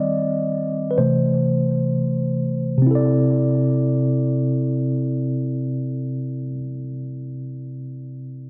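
A clean, up-front sound with light reverb frames this brief, tender R&B excerpt in C major, played in free time. A mellow tine electric piano carries it alone from 0.0 to 8.5 seconds, ranging from C3 to Eb5 and moving through Eb6, C6 and C69 chords for a romantic mood.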